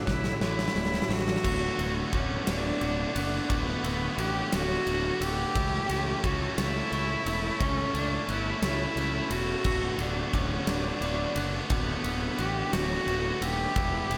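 Set in a moderate, lush hall reverb with a big arena sound, this euphoric, cinematic post-rock passage in 6/8, cut from a longer piece, opens with a drum-fill build-up from a huge acoustic kit with punchy kick and bright cymbals, while a very quiet, twangy clean guitar picks arpeggios only until 1.4 seconds. A growly fuzz bass sits up front beneath a tight distorted guitar riff, and from 1.4 seconds a biting overdriven guitar adds its own riff with slapback echo in the background. Over this, a focused, bowed cello with vibrato carries the melody through slapback echo, and a bell-like glockenspiel struck with hard plastic mallets rings out echoed arpeggios high above as the harmony moves from D to A and on to D6.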